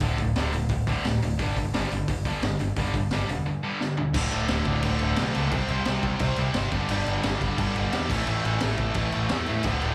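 A raw garage drum kit sits up front in this energetic, rebellious punk rock cut from a longer piece, its high-tuned snare, boomy kick, crashes, hi-hat and toms sounding gritty and saturated with a rolled-off top, alongside a growling, overdriven picked electric bass at 174 BPM in straight 4/4. Two tight, bright distorted guitars play riffs further back, one carrying a slapback echo, over power chords moving from D5 and G5 to C5 and A5. A drum fill at 3.8 seconds leads into the second section, where a very quiet, double-tracked high-gain guitar joins at 4.1 seconds, all heard as a live gig through the venue's PA with a touch of club reverb.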